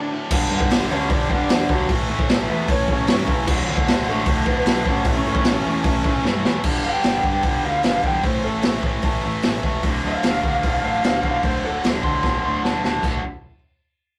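Rowdy and rebellious, this punk rock excerpt charges along at 151 BPM in a rough rehearsal-room sound, with a gritty, saturated garage drum kit up front, two bright, tight distorted guitars hammering out picked riffs, a growling overdriven picked bass underneath, and a lo-fi lead guitar through a small cranked amp carrying the melody before breaking into a solo at 6.6 seconds, with drum fills marking the turns over G5, A, D5 and A changes.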